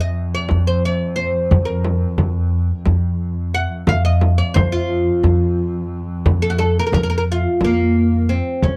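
Passionate and warm, this short excerpt comes from a Turkish makam ensemble piece in F makam hicaz, moving at 177 BPM counted in eighths across a 7/8 metre with a straight feel. The plectrum-plucked oud carries the melody up front, its bright, woody double strings ranging from Bb3 to Gb5 on the fretless neck. Beneath it, an upright bass plucks pizzicato on F2 with a steel-string, woody tone, while a bowed double bass holds a clear, focused drone on the same F2, sitting distant in the mix with vibrato. A frame drum joins at 0.5 seconds, played with soft hands and heard close and dry. The whole recording has little reverb, giving it the dry sound of a close 1970s-style studio session.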